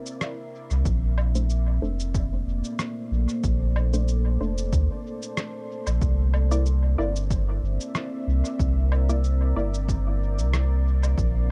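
A swung 4/4 groove at 93 BPM opens this hazy, peaceful ambient dub excerpt in C mixolydian, where a muffled, pitched-down, sampler-style shaker, rim click and woodblock with dub echo and an overdriven, punchy electronic kick set in the background support a round sine sub bass up front, while a dark, detuned sawtooth pad with chorus and built-in reverb sustains chords from C9 to Bbmaj9 and back to C9 at 6.0 seconds, and a muted, mellow filtered chord stab with chorus and dub echo sounds from 1.4 to 9.7 seconds, in a dry, warm production.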